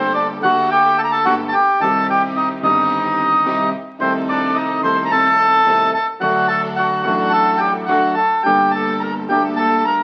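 Heard through the crackle of a very old 78 rpm record and a moderate large-studio reverb, this tense, passionate tango excerpt moves at 108 BPM in 4/4 with a rubato feel, in G harmonic minor, with chords running from Gmadd9 through Cm, Adim/C and D before returning to Gmadd9 at 8.5 seconds. A reedy, band-limited bandoneon carries the melody up front, while a concert grand piano with audible action noise and deep bass supplies intimate accompaniment. Behind them, a lush, focused bowed string section adds vibrato stabs, and a woody pizzicato upright bass sits in the background.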